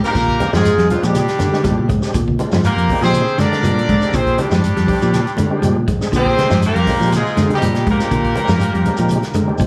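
Afrobeat excerpt with a hypnotic, funky groove, led by a punchy, up-front horn section playing the melody in octave doubling, backed by a raspy baritone saxophone and a clear, scooped trumpet in the background, a reedy organ through slow rotary speaker and light overdrive, dark picked guitar arpeggios, a round fingered bass entering at 0.2 seconds, a distant soul drum kit, grainy shekere, and low-tuned congas arriving at 0.4 seconds, all over a single Bb13 chord in a small, lightly reverberant room.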